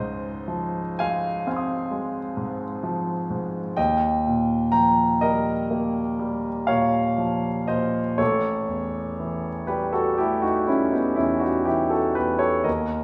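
Hazy and dreamy, this fragment of impressionist classical solo piano drifts in 9/8 with free rubato, its clear concert grand moving through Dbmaj9, then Eb9 at 3.8 seconds and A9 at 8.2 seconds. The piano sits intimate and up front, with deep bass, long sustain and the sound of its action audible beneath the notes. A moderate recital-hall reverb and a hint of small-room ambience give the polished tone a soft halo.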